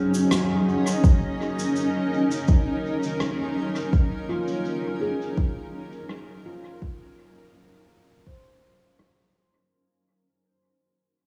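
An echo-heavy mix with light small-room ambience carries this deep, meditative ambient dub excerpt at 83 BPM in Eb dorian, where a blurred, detuned granular cloud pad with built-in reverb holds an Ebm7 chord up front, a ringing nitrided-steel handpan plays low-pass-filtered arpeggios through dub echo under a filter sweep, low-pass-filtered acoustic cabasa and rim click add natural hall tones with their own dub echo, and an overdriven, deep electronic kick enters at 1.0 s and stops at 8.4 s as the piece fades out.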